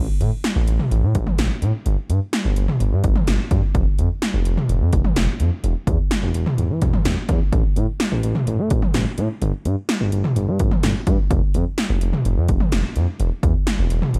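Synth-pop with a driving, cool mood, this short excerpt cut from a longer piece moves in a straight 4/4 feel. A smooth, gliding synth bass opens at the very start, its sawtooth and square-wave tone mellow and sustained, with a fast attack and portamento sliding between notes low in the register. Electronic drums with an analog, 80s pad character join at 0.2 seconds, bringing a punchy kick, metallic hi-hats, toms and a gated snare. Gated reverb on the snare and toms and a gritty overdrive give the kit its hard bite, and both the bass and drums sit up front in the mix. Light reverb and a digital ambience surround the pair, keeping the whole passage sleek and focused.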